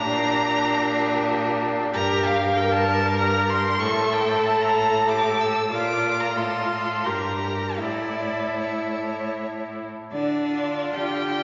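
Melancholic and yearning, this short passage from a slow romantic movement for string quartet unfolds in D minor and triple time, its rubato pulse drifting between 71 and 97 BPM. A clear, focused first violin carries the melody high above the ensemble, bowed with vibrato and placed up front, while a second violin, close and equally clear, traces a lower inner line. The viola supplies a rich, smooth and even accompaniment with vibrato, sounding somewhat distant yet still forward in the balance, and the cello anchors the bass with a rich, focused tone. The harmony moves through minor and open chords before settling on D minor at 10.1 seconds, where a brief new section begins. A wet church reverb with a long tail surrounds the quartet, and the top end is gently rolled off, giving the sound a soft, dark glow. The recording is a fragment cut from a longer piece.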